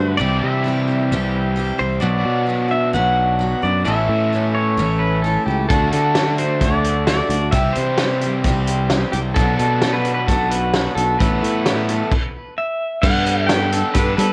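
Folk rock with a heartland rock lean, this open-road excerpt moves at 131 BPM in a straight 4/4, with a bright, twangy pedal steel carrying the melody over picked steel-string acoustic guitar, a double-tracked overdriven electric guitar riff and a round, up-front picked electric bass, all moving through chords from C and Bm to A and D before settling on Asus2 and Gadd9. A loose indie drum kit with a fat snare and punchy kick enters at 5.7 seconds, and a stop falls from 12.1 to 13.0 seconds before a brief new section begins. Light reverb and small room ambience surround the mix, which carries the warbling pitch drift of worn old cassette tape.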